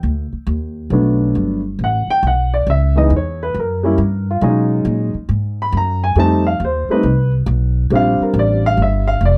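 Sophisticated and playful, this jazz piano trio fragment swings at 137 BPM in 4/4, cut from a longer piece. A woody, pizzicato upright bass with steel strings opens alone before a dark, mellow baby grand piano enters at 0.9 seconds to take the melody, both sitting up front in light reverb. The piano solos over chords moving from Gmaj9 through C#m7, F#(b9) and B69 to F7 and Bb6, in a tuning slightly below standard pitch.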